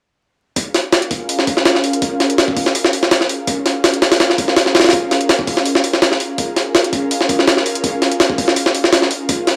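A gritty, dry hardware recording with vinyl crackle and a light digital ambience frames this short, nostalgic drum and bass cut at 165 BPM in Bb minor, resting on a single Bbm7 chord. Up front from 0.6 seconds, a compressed, pitched-up sampler-style jungle kit brings a thumpy kick, a high-tuned snare and filtered hi-hats with a tape-warm character and small room ambience. Entering at 1.1 seconds, a quieter ethereal pad of detuned sawtooth and triangle voices in unison holds airy, slow-blooming chords through ensemble chorus and its own reverb for an atmospheric glow.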